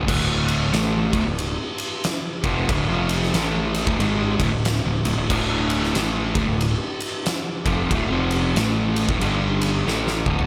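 Ominous and sludgy, this stoner and doom metal excerpt swings in 4/4 as a dark, double-tracked fuzz guitar riff grinds over an overdriven fingered electric bass and an oversized low-tuned drum kit with a boomy kick, fat snare and gritty, pumping room sound, moving from D minor to G5 at 9.2 seconds and then to D5 as a drum fill begins at 9.9 seconds.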